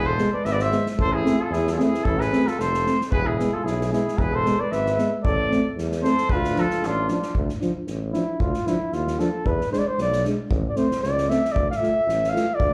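Balkan folk brass band music, fiery and virtuosic, moving at 114 BPM in a swung 2/4 in D dorian sharp4. A trumpet carries the melody over a flugelhorn second line, a dark euphonium pair and an up-front tuba bass, while a distant, roomy acoustic drum kit with a punchy kick and bundle sticks drives the beat. At 7.3 seconds the trumpet drops out and the flugelhorn takes a solo until 12.7 seconds, all heard as a live gig through a club PA with slapback echo on the trumpet, flugelhorn and euphoniums.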